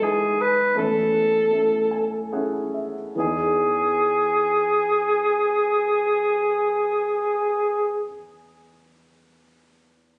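In a straight 3/4 at 71-82 BPM, this fragment of an intimate, nostalgic acoustic folk-pop ballad in E major slows over its first 3.2 seconds while the harmony moves between Emaj7 and Amaj7/E. A dark, roomy cor anglais sings the classical-style solo melody up front with light vibrato until 8.0 seconds, over a warm grand piano accompaniment of short-sustained notes that rings on alone until 10.2 seconds. Captured on a phone in the room, the sound is compressed and dull at the top, with a club reverb around it.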